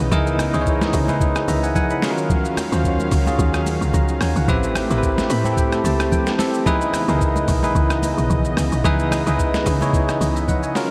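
Soulful and deep, this amapiano excerpt sets a bell-like tine electric piano, up front with fills around 1.2 and 5.0 seconds, over a smooth, detuned analog pad shimmering with chorus and tremolo, a woody, punchy log drum bass, a gritty, pitched-down sampler-style drum kit with thumpy kick, and soft-handed congas in the background, all soaked in a huge, dreamy reverb as the chords move from C#m9 through D#m9 and Am9 back to C#m9.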